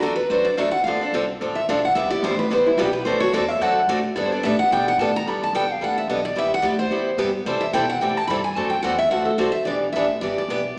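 A full-bodied jumbo steel-string guitar with fresh strings and audible finger squeak takes the solo up front in this lively, swinging cut of acoustic string swing in the jazz manouche style, over a boxy, picked parlour guitar accompaniment and a woody, thumpy pizzicato upright bass on dark gut strings, all set in a reverberant recital hall with a small-speaker sound as the chords move through D, Dm7, Cmaj7 and D7 before settling on Gadd9 and cycling toward Em7.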